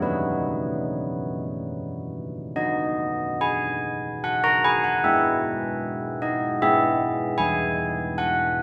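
Carillon bells play alone in this serene, festive classical church-bell tune in 3/4 at 69-76 BPM in B major, their bronze, mellow tone with its minor-third overtone sitting up front in a wet reverb as the harmony moves from B to E/G# at 5.0 s and settles on E at 7.4 s in this short excerpt.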